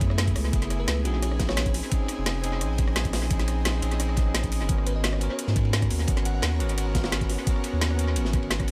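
Soulful and melancholic, this short cut of liquid drum and bass runs at 173 BPM over F#m11, A#m11 and G#m11 chords, with a deep, round sub bass up front, an overdriven knocking electronic kick and a garage kit of woody snare, rim click and metallic hats layered over a dark, gritty breakbeat kit with rolled-off ride and snare sitting in the background. A clean, direct tine electric piano carries the accompaniment through sampler grit and tape echo, while a shimmering, ethereal pad with octave-up shimmer pumps with sidechain movement under its own reverb. A sparkling FM electric piano adds brief melodic phrases from 0.0 to 1.7 seconds and again from 4.9 seconds, trailing dub echo through a dry, echo-heavy mix.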